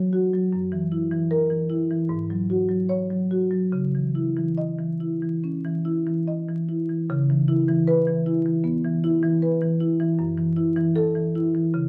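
The rhythm moves with a free, rubato feel over a 4/4 pulse at around 70-79 BPM, giving this contemporary classical piece for solo marimba a hypnotic, flowing character. Played with soft mallets on padauk bars, the marimba sounds woody, mellow and round, sitting up front and carrying the whole piece alone from F#2 up to D#5. In C# minor and tuned slightly low, the harmony starts unaccompanied by chords, then moves through F#7, G#7sus4 and C#madd9 before shifting at 7.1 seconds into a new section built on C#m7 and F#m7. A reverberant studio space surrounds the instrument, and a layer of vinyl crackle adds a faintly aged texture. The passage runs for just under 12 seconds and is cut from a longer piece.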